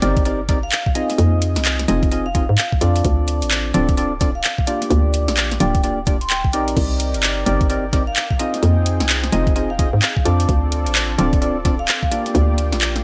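UK garage in a bouncy, soulful two-step swing, this excerpt from a longer piece sets dark, chorused organ stabs with tape grit and dub echo up front over a hollow, knocking FM bass that pumps against an overdriven electronic kick and a layered garage kit of woody snare, metallic hats, handclaps, congas and crash in a small room, while a ringing vibraphone melody with dub echo sits in the background and a smooth, detuned sawtooth pad joins at 6.8 seconds, all carrying a digital haze of lossy artefacts.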